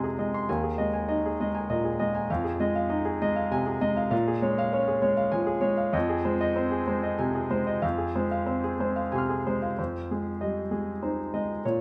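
Melancholic and reflective, this short piece of neoclassical minimalist piano moves in a gently flexible three-beat pulse, drifting freely with the phrasing. A lone grand piano carries everything, its tone smooth and vintage, sitting up front in the mix as it spans from low Eb2 up to a high F6. The harmony circles around Ebsus4, Fm7 and Bbm7 before settling onto a plain Fm chord, and a new passage opens at 9.8 s, returning to Fm7. The playing is set in a stone room whose reverb lingers for about 1.3 seconds, giving it a live, in-the-room presence. Cut from a longer work, the fragment stops at 11.8 s as if mid-thought.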